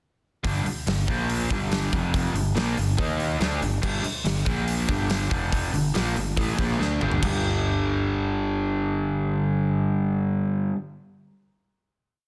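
A dense, heavily limited modern mix with light reverb and small room ambience carries this short, aggressive, heavy hard rock piece in G minor at 141 BPM, where a crunchy, double-tracked overdriven guitar picks out an up-front power-chord riff, a dark, round fretless bass drives eighth notes doubling it, and a big acoustic rock kit with a punchy kick and bright cymbals grooves until a drum fill at 6.8 s leads into a G5 chord that rings from 7.2 s to the end.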